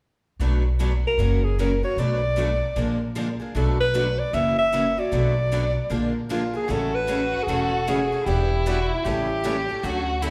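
Acoustic string swing in the jazz manouche style, lively and playful at 153 BPM in A major, with two bright, picked steel-string acoustic guitars (one boxy) and a woody, thumpy pizzicato upright bass on gut strings carrying the accompaniment while a warm, up-front alto saxophone sings the jazzy solo melody with vibrato from 1.1 seconds and a bowed violin, expressive with portamento yet distant, joins on a second line at 6.6 seconds, all in the wet bloom of a recital hall in this excerpt cut from a longer piece.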